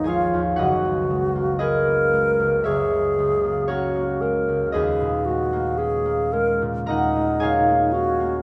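Mysterious and hazy, this short classical excerpt is an impressionist duo at a slow, rubato 58 BPM in 4/4, drifting from G#madd9 through F#9 to D#7sus4. The alto flute carries the melody throughout its 8.4 seconds with a pure, bright tone, vibrato, soft attacks and lifted highs. Alongside it, the concert harp plays fingerpicked, ringing accompaniment, both parts sitting up front in a wet recital hall reverb.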